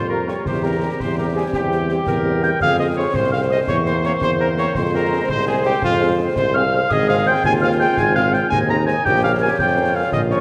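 Heard in a concert hall with a long, wet reverb tail, this excerpt from a longer military-style march for wind band moves in a straight 6/8 at 112 BPM in F minor, with a resolute, martial mood. A smooth-topped cornet carries the melody up front, matched in prominence by a clear tuba holding down the bass. Behind them, a pure, mellow wooden piccolo with vibrato and tongued notes plays a second line from the background, alongside a tight woodwind section with light vibrato. A dark, roomy trombone section sustains chords very quietly, and a warm, distant French horn section adds accompaniment from 0.1 s. Closely captured concert snare drum, concert bass drum and clash cymbals with a dusky cymbal tone come in at 0.3 s, as the harmony passes from C/E through Fm and Ab to Bbm.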